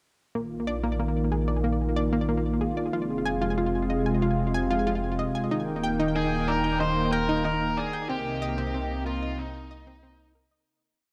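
A lush, airy pad of detuned unison chords and a bright analog pluck cycling an eight-step sequence open this short, expansive piece of ambient space music at 93 BPM, joined almost at once by a deep, round sine-and-square bass holding the roots under a Bbsus4, Fm, Eb, Cm7 progression. At 6.2 seconds an overdriven, biting electric lead guitar with delay enters up front, playing a free melody. Everything sits in a wet plate reverb with a cosmic sense of space, and the piece fades out from 7.2 seconds.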